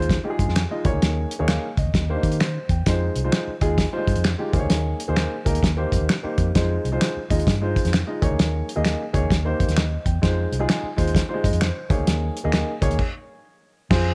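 Urgent and driving, this uptempo 1960s-style soul excerpt runs at 130 BPM in 4/4 with a swung eighth-note feel, centred in F minor and tuned slightly flat of standard pitch at A4 = 438 Hz. A cloth-damped, thuddy drum kit sits up front, its fat snare, tight kick, hi-hat and dark crash cymbals sounding smooth and rolled-off on top in a small acoustic room. Beneath it, a vintage muted fingered electric bass gives a round, foam-muted, amped tone, while a grand piano, natural and also up front, supplies the accompaniment through a repeating cycle of Fm7, Eb7sus4 and Cm7/Eb. Finger snaps, set low in the mix, come in at 0.6 seconds and carry on until 12.7 seconds. The band hits a stop at 13.0 seconds, and the whole passage is bathed in light small-room reverb.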